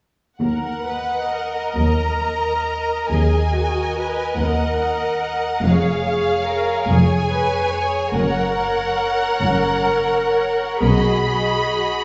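A slow, rubato 12/8 pulse of roughly 41 to 49 dotted-quarter beats per minute carries this solemn, elegiac fragment of a romantic movement for string orchestra in E-flat minor. From 0.4 s the violin section sings the melody up front in its upper register, bowed with vibrato, a soft attack and a smooth, expressive top, while the rich violas fill in the accompaniment with an even, lush tone. Beneath them, the cellos sit close and expressive with soft-attacked vibrato, and the double basses add a smooth, warm, even foundation. A second violin line enters at 0.9 s, sounding focused yet distant behind the lead. The harmony moves from E-flat minor through D-flat over F and G-flat to B, all heard from further back in a reverberant recital hall whose mellow, rolled-off highs lend the strings a hushed, mournful glow.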